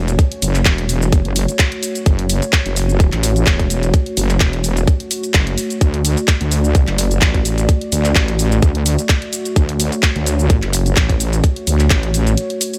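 Bass house at 128 BPM in 4/4, this bouncy, gritty passage is cut from a longer piece, and its sixteenths carry a light swing. A heavy, saturated wobble bass sits up front, its detuned sawtooth-and-sine tone thickened with chorus, overdrive and sidechain pumping. Behind it, a moody analog pad holds sustained chords with a slow attack, long release and a moving notch, its deep square and sawtooth layers also pumping with the sidechain. A tight, layered electronic kick punches through alongside a garage kit of handclaps, hi-hat and shaker, both set in a small room ambience within a digital space. The harmony moves from F#m to D at 5.8 seconds, and the wobble bass drops out at 12.4 seconds for a brief break as the pad and kit carry on.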